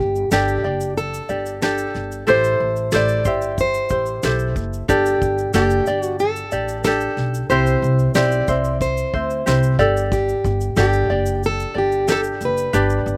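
Heartfelt and easy-going, this acoustic pop passage in a straight 4/4 is taken from a longer piece. A dark, full-bodied jumbo steel-string guitar, fingerpicked and plugged in, carries the melody up front, while a light fingerpicked ukulele with slapback echo and a woody pizzicato upright bass accompany it over a Gsus2, Am7 and C progression. A soft brush kit with a fat snare, tight kick and shaker joins at 0.2 s, all in a dry, open-air sound with little reverb.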